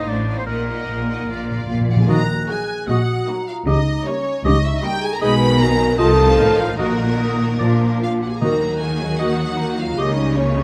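A stormy, dramatic passage from a fast romantic orchestral movement opens at once with lush, bowed strings. A violin section carries the melody with smooth vibrato, supported by a second violin line, an intense viola section, an expressive cello section and a woody double bass section, while a clear, punchy solo oboe sings a second line alongside them. Around 1.3 seconds the timpani, struck with medium mallets on calf heads, break in with a fill, and a mellow, vintage-toned French horn section soon settles into sustained chords. At 2.1 seconds the music moves into a new section as an airy, hollow small flute group and a smooth-topped solo clarinet add further lines in the background. The piece pushes ahead at 152 BPM in 4/4 with a rubato feel in E-flat minor, with its harmony churning around E-flat minor and B-flat chords that darken toward A-flat minor and F7. A moderate scoring-stage reverb gives the ensemble a spacious, slightly distant blend.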